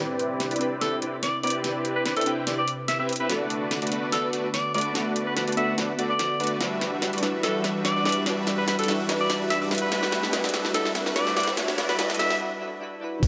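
Future bass with a lush, emotional mood, moving in a half-time feel with a light swing, this excerpt from a longer piece is one long build-up. A bright alto saxophone carries the melody from 0.8 seconds, punchy and vintage with light vibrato and a forceful pop style, pumping against the sidechain and trailed by digital delay. Huge detuned supersaw chords sit up front with a filter sweep, while glassy digital keys with chorus and phaser decay in the background and an airy, breathy pad holds soft sustained chords. A layered pop drum kit with a fat snare and metallic hats runs a fill through the build, a deep 808-style bass is barely audible, and a very quiet riser and impact enter at 9.4 seconds. The harmony moves through Cmaj9, Bm7/D, Em9 and Am9, a brief break arrives at 12.4 seconds, and a knocking electronic kick lands up front at 13.2 seconds, all bathed in a lush hall reverb.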